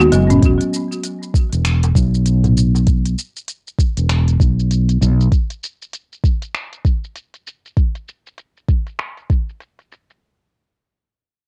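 This short cut from a longer piece has the dry, close feel of a home cassette recording, with little reverb around the instruments. It is an earthy, mystical organic downtempo groove with a swung sixteenth-note feel. A round, dark fretless electric bass sits up front, treated with lush chorus and sidechain pumping, and it drops out at 5.3 seconds. Underneath, an overdriven electronic drum kit of finger snaps, crisp filtered hi-hat and shaker carries through to the end, while a soft, overdriven electronic kick arrives at 0.4 seconds after a brief break and a filter sweep begins on the drums. In the background, a metal-shelled darbuka played with soft hands adds a close, acoustic touch before dropping out at 2.8 seconds.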